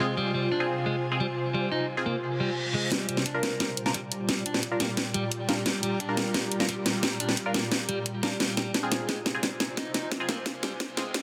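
Dense and heavily limited, with a lush hall reverb, this futuristic, tense cut of dark technical drum and bass opens on a swarming, detuned drone, clean picked electric guitar arpeggios roughened by 12-bit sampler grit and digital delay, nasal band-passed chord stabs run through a phaser, and an ethereal airy pad with ensemble chorus, the drone, guitar and pad pumping to the sidechain, until a reverse cymbal at 2.4 s ushers in up-front drums with a cracking snare and hi-hat over a very quiet knocking kick, while a filter sweep on the stabs drives the build-up and a riser arrives at 10.1 s.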